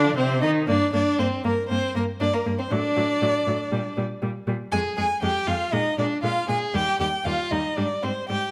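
Opening together, a string quartet launches a stormy, dramatic passage cut from a quick classical-period movement, played with a flexible rubato feel. A warm first violin sings the melody with expressive vibrato and portamento over a focused second violin line and bowed viola accompaniment, while a rich, soft-attacked cello anchors the bass with its own sliding portamento. The harmony moves from C minor through G minor and F minor toward Eb and a closing Abmaj7#11. Close, detailed microphones place both violins and the cello up front within a moderate scoring-stage reverb.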